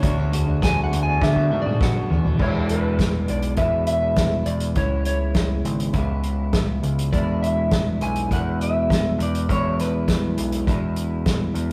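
A slightly broken-up slide guitar opens this trippy, hypnotic psychedelic rock excerpt with a short solo over a soft-mallet drum fill, and from 2.4 s the music settles into a straight 102 BPM groove in E mixolydian over E7 and C#m7, carried by a picked, compressed guitar riff through a rotary speaker, a bright, overdriven growling bass, up-front mallet drums with dark cymbals and a punchy kick, and a buzzing, shimmering tanpura drone in the background, captured in a rough rehearsal room with moderate stone-room reverb.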